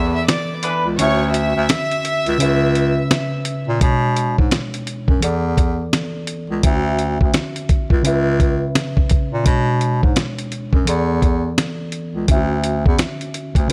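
Dusty and close in a small room, this gritty, moody boom-bap hip-hop excerpt at 85 BPM sets a swung, compressed sampler-style drum kit with its thumpy kick and fat snare up front, its kick dropping out from 1.0 to 3.8 seconds, beneath a worn, slightly out-of-tune tine electric piano, a clear bass clarinet with jazz-style vibrato and scooped notes, a soft, floating bowed violin section that carries the tape-echoed melody until 3.3 seconds, and a distant, roomy horn section that adds punchy stabs between 0.6 and 0.9 seconds.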